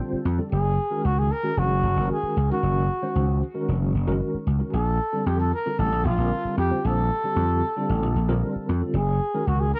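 Jazz with a soaring, bright mood, this excerpt from a longer piece opens with a short fill on a worn, slightly out-of-tune tine electric piano carrying medium tremolo and ensemble chorus, joined almost at once by a punchy, amped vintage slap bass sitting up front, before a dark, breathy trumpet with vibrato and scooped notes takes the solo melody through tape echo from 0.5 seconds, all over alternating Bbmaj9 and Gbadd9 chords in a dry, close 1970s-style studio sound.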